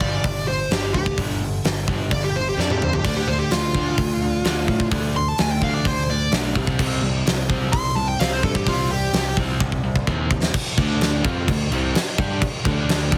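A straight 4/4 pulse at 128 BPM drives this menacing, heavy hard rock excerpt in D minor, cut from a longer piece. A huge arena drum kit sits up front with a fat snare, punchy kick, hi-hat, crash cymbal and toms, firing fills at 2.6 and 9.6 seconds. Beneath it, a double-tracked overdriven semi-hollow guitar picks the riff with a hollow-body glow while a bright, growly picked electric bass pushes the low end over the G5, Dm and C5 changes. A smooth overdriven lead guitar, placed up front with a slapback echo, plays a solo melody that stops at 9.4 seconds, leaving the band to carry the short closing section on Dm. The studio ambience is heavily compressed, giving the mix a dense, radio-like punch.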